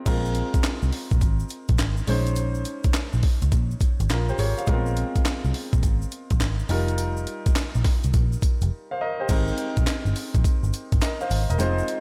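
Punchy and confident, this short new jack swing excerpt struts at 104 BPM with a swung 16th-note feel, built on a gritty, compressed sampler-style breakbeat kit whose thumpy kick, high-tuned snare, handclaps, hi-hat, tambourine and crash sit up front beside a dark, round, foam-muted picked electric bass. A smooth vintage grand piano with slapback echo carries lush extended chords such as Ab69 and Bbm11, while a grainy, very quiet tube shaker adds close, dry texture under light reverb. A brief break at 8.7 seconds leads into a new section at 9.3 seconds that settles on Abmaj9.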